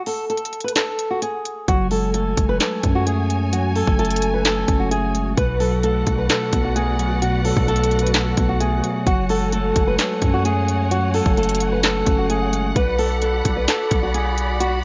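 Lightly reverberant and dark-toned with a softened top end, this melancholic, hard-hitting trap excerpt in B dorian moves at a half-time 130 BPM, where an up-front, thumb-plucked flamenco guitar carries the melody over a trap kit of hard-clipped kick, sharp snare, crisp hats and handclaps, joined at 1.7 seconds by a mellow tine electric piano, lush bowed strings with vibrato, and a deep, sine-like 808 bass as the chords shift between F#madd9 and Bm7, with the piano dropping out at 12.8 seconds.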